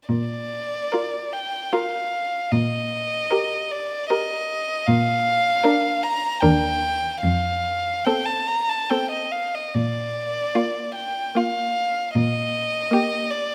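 Moving in a rubato 3/4 at 70-79 BPM, this serene, slow romantic movement for string quartet in Bb major opens at 0.1 seconds with a violin melody, soft-attacked and sul tasto with light vibrato, up front over a dark, smooth-topped cello bass, before a second violin line and a rich, airy-bowed viola accompaniment join at 0.9 seconds, all captured by close, detailed microphones in a moderate scoring-stage reverb as the harmony moves from Bb through Eb/Bb, Ebmaj7 and F back to Bb.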